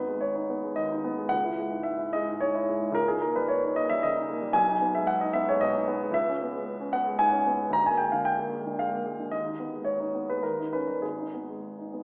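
Romantic classical character piece for solo piano, stormy and passionate, moving in a flexible, rubato triple metre through a 12-second passage cut from a longer work. The warm baby grand sits up front with a short sustain, ranging from deep bass to bright upper register as its restless minor-key harmonies unfold. It is wrapped in a wet recital-hall reverb, and its AM-radio-like sound gives it a broadcast quality.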